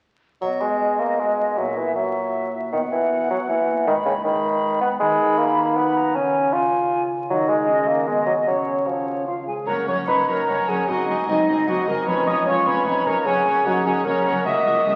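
A fast, straight 3/4 pulse at 154 BPM drives this lively, dramatic romantic orchestral excerpt in B major, turning to F# major at 5.0 s. From the start, an up-front bassoon with light vibrato accompanies a dark clarinet and an airy, distant silver flute over a ringing, thumb-plucked harp, with a close triangle sounding briefly at the opening. From 9.7 s lush bowed strings join, with a portamento-laden violin melody in the background, a focused second violin line, an intense viola section, and distant, even cellos and even double basses beneath, the whole heard through a scoring-stage reverb and the crackle of a very old 78 rpm record.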